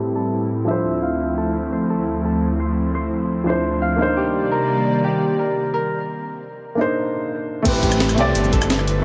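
Bathed in a huge ambient reverb and a low-pass filter, this dreamy, rolling liquid drum and bass at 172 BPM in A minor opens with a dark, intimate baby grand piano carrying dub echo, an airy, breathy pad with chorus and sidechain pumping, and a thumb-plucked Celtic harp playing ringing arpeggios through a filter sweep and digital delay, until a break at 6.3 seconds gives way to a drop at 7.7 seconds where a deep, rumbling detuned saw bass, a gritty, compressed breakbeat kit of snare, hi-hat, rim click, cabasa and crash cymbal, a thumpy electronic kick and a background downlifter arrive.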